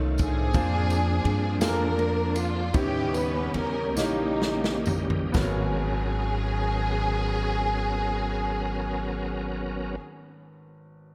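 Solemn and fervent, this short excerpt of slow gospel in 6/8 moves at roughly 40-57 BPM in G# minor, with a dark production and a light, small-room reverb. Lush, bowed strings carry the melody up front, their soft attack and vibrato making the line expressive and close. Beneath them a woody, thumpy upright bass sits forward in the mix, while a shouting tonewheel organ holds full sustained chords through a fast rotary speaker, light overdrive and chorus vibrato. A brilliant concert grand piano accompanies from the background with deep bass. A polished, airy big-band drum kit with a punchy kick plays until about 5.6 seconds and a distant, jingly tambourine until about 5.8 seconds. The tempo slows from 0.5 seconds, and a drum fill from 4.0 seconds leads into a G#m11 chord at 5.3 seconds. Strings, organ and bass continue to 10.0 seconds, after which the piano carries on alone to 11.1 seconds.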